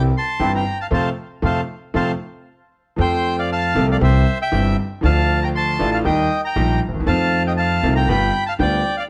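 A reedy bandoneon carries the melody up front, sitting high in its range with a plate reverb that gives it a polished sheen. This is a playful, elegant tango in F major at 118 BPM in 4/4, played with a rubato feel, and it is cut from a longer piece. A vintage-sounding concert grand piano, smooth and deep in the bass, supplies the accompaniment close to the listener, while a woody, thumpy upright bass with steel strings anchors the low end in pizzicato. A second bandoneon, darker and set in the background, adds stabs only at the opening before falling away at 2.1 seconds. The band lands an accent from 0.9 to 3.0 seconds, and the harmony then wanders from C through Dmadd9 and Eb before reaching F7 and a closing G7. A moderate studio reverb gives the whole ensemble a sense of room.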